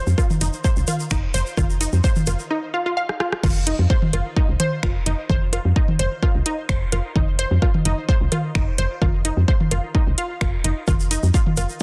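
A minimal techno excerpt at 129 BPM in 4/4 with a straight, hypnotic and sparse feel, built over an F chord. A punchy, up-front electronic kick anchors the groove alongside a house kit of metallic hi-hats, finger snaps, rim clicks and crash cymbal, its snare softly clipped, while delayed analog-toned electronic bongos and toms add movement. Underneath, a woody, round FM bass with a fast attack and dark decay pumps against the kick, sitting up front between F1 and F2. Above it, a juicy, squelchy resonant blip pluck riffs between Eb4 and F5, coloured by chorus, cassette-tape grit, sidechain pumping and dub echo. A grainy, band-limited tube shaker appears at the start and returns near the end, and after a short break with a drum fill, the drop lands at 3.4 seconds. The mix is dry, dense and heavily limited.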